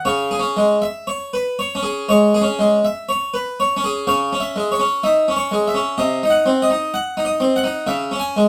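A flexible rubato pulse in four moves this short fragment of a baroque-style classical suite movement, its time stretching and settling with a serene, radiant calm. A solo Flemish-style harpsichord with three sets of strings carries everything, its plucked tone brilliant and full, spanning from low in the bass to high in the treble. Close-miked and dry, the instrument sits up front, while a moderate studio ambience lends the space a short, gentle tail. The music falls into two sections, with the second beginning at 4.1 s. The harmony rests on a minor chord, darkens to a diminished chord at 6.0 s, and returns to the opening minor chord at 7.9 s, just before the fragment breaks off.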